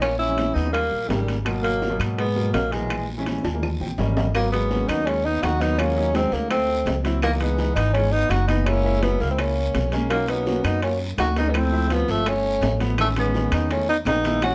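A straight 4/4 Afro-Cuban jazz groove of round bongos, bright high-tuned congas, ringing timbales, woody claves and raspy guiro drives this fiery, sophisticated excerpt, as an up-front, growly pizzicato upright bass and a warm concert grand piano with audible action noise fill out the accompaniment, a mellow tenor saxophone with vibrato carries the melody, and a gritty, growling trombone with scooped notes plays a second line in the background under light reverb, while a drum fill at 3.3 seconds and a piano fill at 3.6 seconds lead into a new section at 4.3 seconds.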